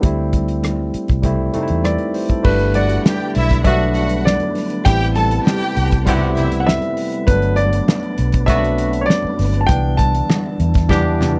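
This lush, warm 1970s-style soul excerpt in G major at 99 BPM opens on a bright, barky tine electric piano through a combo amp, joined from the start by a round, foam-muted fingered electric bass, a damped drum kit with a fat snare, tight kick and dark cymbals, and very quiet, distant congas ringing in a large room. A natural baby grand piano carries the melody from 1.8 seconds, set off by a slapback echo. A very quiet tonewheel organ then holds sustained chords with key click, light overdrive and a rotary speaker. From 2.7 to 6.6 seconds a rich, expressive violin section bows a lush second line, and from 3.7 seconds a distant, roomy jazz-style horn section punctuates with stabs. The harmony moves from D9sus4 through Gmaj7, Am7 and back to Gmaj7 before reaching Cmaj9, and a drum fill closes the passage. The sound is dry and close, with the drums, bass and electric piano up front.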